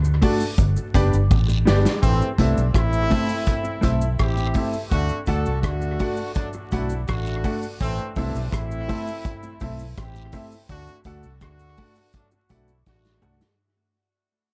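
An echo-heavy mix with light reverb, small-room ambience and vinyl crackle frames this meditative, laid-back roots reggae, cut from a longer piece and fading out from 2.0 seconds onward at 83 BPM in A dorian. A round, foam-muted electric bass sits up front with a vintage drum kit of punchy kick, snare, rim click, hi-hat and toms, while close, dry cabasa and guiro add quiet texture. A dark, clean electric guitar and a woody upright piano with long sustain supply accompaniment and stabs over chords moving between D, G and Am. A smooth horn section with light vibrato enters at 2.0 seconds as a second line with dub echo matching the guitar's, and drum fills mark 1.3 and 12.9 seconds.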